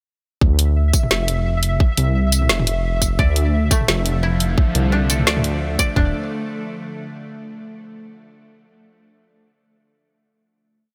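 Half-time drum and bass in D minor at 173 BPM, this short, complete piece feels heavy and cinematic, with a 16th-note swing under its slow half-time pulse. From 0.4 seconds a deep, rumbling detuned saw bass plays chopped phrases up front alongside a layered electronic drum kit carrying a tight kick and floor tom, joined at 0.6 seconds by a second kit with a sparse beat of woody snare, bright closed hats, tambourine and low tom, both re-recorded in a small room. A pulsing, tempo-synced gated texture holds a single high note softly in the background, coloured by chorus and its own reverb. A mellow, dry koto enters at 3.2 seconds with a woody, fingerpicked 12-step loop that drifts against the bar, given a tape echo. Soon after, a tense, string-like drone with slow attack, vibrato and phaser swells in beneath, pumping against the beat, before the drop gives way to a final D major chord at 6.0 seconds in an otherwise close, dry mix.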